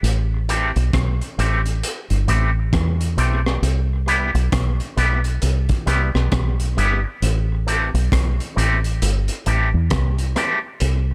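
A deep, round fingered electric bass sits up front for the whole clip, its foam-muted, dark tone carrying the low end of this sunny, laid-back roots reggae excerpt. Beneath it, a crunchy breakbeat drum kit of hi-hat, kick drum and rim click sounds saturated and gritty, with a tight kick, a rolled-off top and a touch of tape echo, sitting further back in the mix. From 0.5 s an electric guitar enters as accompaniment, clean and picked through an envelope filter, with a twangy, warm character shaped by harmonic tremolo and tape echo. The harmony moves from Am7 to Cmaj7 and back to Am7, with a relaxed swing on the sixteenths. The dry, close sound carries little reverb, and the clip reads as a short slice cut from a longer piece.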